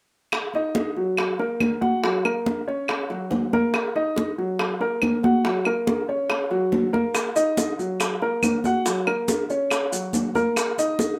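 Afro-Cuban jazz cut from a longer piece, sophisticated and lively, where a boxy, woody upright piano sits up front with long sustain, alternating between F#6 and F# chords (the last one rootless) over close, dry congas played with soft hands, tight, hard-handed bongos heard distant in a large room, and woody claves, close and dry, with grainy, mellow maracas joining at 7.1 seconds under a light reverb.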